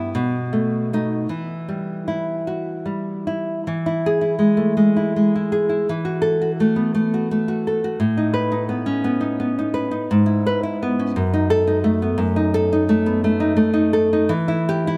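A light reverb surrounds a close, up-front nylon-string guitar in this short passage, cut from a longer romantic piece for solo classical guitar. The mood is wistful and melancholic, moving at a slow, rubato pace in 6/8, around 49-58 BPM counted in dotted quarters. The fingerpicked guitar, warm and plainly acoustic, spans the range from F#2 to B4 and opens in E minor, turning from B7 to Em. At 3.6 s the music brightens into E major, passing through F#m/E, B7/A, E/G# and B7/F#. Near the close, at 14.3 s, an Em chord returns, pulling the piece back toward its sorrowful opening colour.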